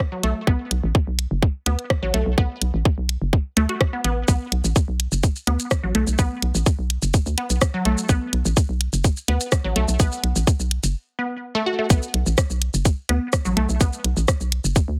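Clinical and hypnotic, this minimal techno excerpt in B minor runs at 126 BPM in straight 4/4, built on a tight, overdriven electronic kick and an overdriven garage kit of hi-hat, rim click and shaker, with a hollow, bouncy FM bass knocking and pumping underneath while a squelchy, bright, resonant blip pluck riff, treated with phaser, cassette tape colour, digital delay and sidechain pumping, sits up front, all under light reverb and a heavily compressed radio-like sound, before a brief break at 10.9 s gives way to a drop at 11.9 s.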